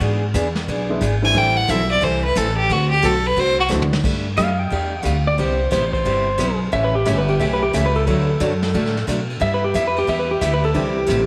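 Western swing country in G major at a swung 179 BPM, this cheerful, playful excerpt opens with an intense, bright fiddle soloing over full-bodied picked dreadnought acoustic guitar, woody pizzicato upright bass, a brushed vintage drum kit with dark cymbals, and a smooth, slightly detuned upright piano in the background, until a drum fill leads at 4.0 s into a twangy, compressed pedal steel guitar solo played with fingerpicks, slide and volume swells and treated with slapback echo, set in a moderate echo chamber reverb.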